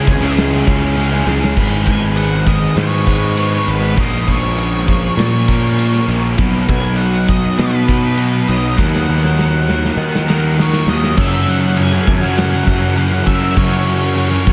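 A hazy, brooding stretch of shoegaze and dream pop opens on a wall of guitars: a dark, chorused thick fuzz guitar sits in the background beside a compressed overdriven electric guitar trailing reverse reverb, while a bright, double-tracked distorted electric guitar riff drops out at 1.6 seconds. Above them, a warm octave-fuzz lead guitar carries the melody through analog delay, and a growly, up-front fuzz picked electric bass and a punchy, loose indie drum kit with dark cymbals and a pumping room sound push the steady four-beat pulse. The drums fill at 1.3 seconds and again from 8.8 to 11.2 seconds, and the whole mix is soaked in moderate cathedral reverb.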